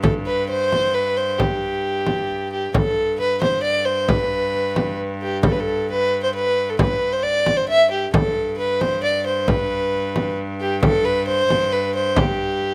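From the first second a woody, up-front fiddle carries the melody with light vibrato and portamento, a clear, reedy viola da gamba holds a ringing G drone, and a deep, dry frame drum keeps time in this festive, ancient-sounding medieval dance in G major at 134 BPM in 3/4, captured outdoors with little reverb.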